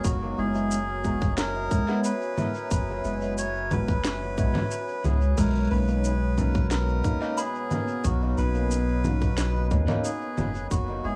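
An echo-heavy mix with light reverb and a small-room digital ambience frames this hazy, peaceful ambient dub piece, cut from a longer track, moving at 90 BPM in a straight 4/4 and tuned slightly below standard pitch to A4 = 437 Hz. A reedy, breathy melodica carries the melody through dub echo, while a deep, moody pad holds sustained chords beneath it, its detuned, chorused tone drifting in its own reverb. A buzzing kalimba sits in the background with woody, ringing arpeggios bathed in dub echo until 10.2 seconds, and a bright, clean tine electric piano enters at 0.4 seconds with phased stabs that also trail into echo. Underneath, a round, soft sub bass sits up front alongside a tight electronic kick, with an electronic shaker, woody snare and congas thrown into echo. The harmony rests on F#9sus4 before shifting to Bmaj7 at 5.4 seconds.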